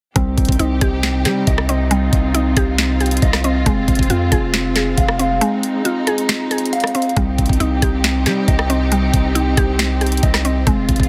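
Over a half-time trap groove of knocking kick, sharp snare, rim clicks and bright hi-hats, with the kick dropping out from 5.4 to 7.2 seconds, this dark, eerie hip hop fragment layers a deep, long-decaying 808 bass, a woody, round mallet-like synth pluck thickened by chorus, a mellow, clean electric guitar playing fingered arpeggios through digital delay, and lush, bowed symphonic strings with vibrato and portamento sustaining chords underneath, in a dry, heavily compressed radio-style mix.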